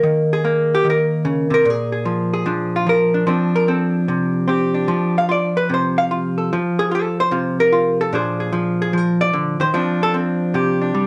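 The recording sits in a wet studio reverb with a short decay, heard from further back in the room, its top end capped at 10.9 kHz. This is a warm, swinging solo jazz piece at 148 BPM in 4/4, with a lilting swing on the eighth notes, cut from a longer performance. A single electric hollow-body jazz guitar carries the whole passage. Its tone is dark and clean, picked and compressed, and it stands up front in the mix, ranging from Bb2 up to F5. Over the 11.1 seconds the harmony moves from Eb5 through Bb7 and F69 to Bb9, before settling on Fsus2 at 9.7 seconds.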